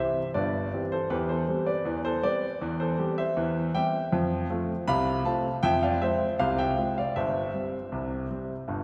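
A clear, intimate grand piano sits up front, its action noise audible, while a wet church reverb with a 2.8-second tail lets each chord bloom into a large, resonant hall. This short excerpt, cut from a longer piece, is lively, cheerful ragtime for solo piano in C major, moving at 79 BPM in a straight 2/4. The piano plays alone for the whole 8.8 seconds, ranging from a deep G1 up to B5 with a natural, unforced tone. The harmony sets out on C, passes through C/E and F, and then takes a colourful turn to F minor at 5.6 seconds before settling onto C/G. That shift to the minor chord stands out within an otherwise bright, buoyant passage.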